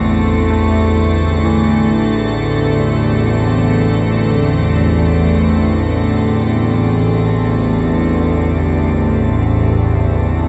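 A tense, sawtooth-edged bowed-like drone with vibrato sits up front in this vast, ominous dark ambient piece in free time, opening on an A minor chord, joined by a soft, sul tasto cello section holding sustained chords, a brilliant concert grand piano playing arpeggios in the background through diffuse ambient delay, and an icy, crystalline glass pad with chorus that fades out across the full 10.5 seconds, the mix steeped in a wet cathedral reverb within a dark production cut from a longer work.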